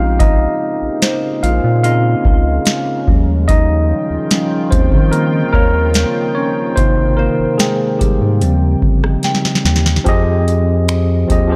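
A clean, up-front tine electric piano takes the lead in this sensual, moody contemporary R&B excerpt at 73 BPM, backed by a round, mellow analog bass, a booming drum machine with deep kick, crisp snare, metallic hats, finger snaps and rim clicks, a deep, detuned ambient pad that pumps under chorus and reverb until 10.0 seconds, and a soft, pure synth bell with tape echo glinting in the background, as Bbm11, Eb9 and Abmaj9 chords give way to a drum fill at 9.2 seconds and a shift to Fm9 at 10.1 seconds in a dark production.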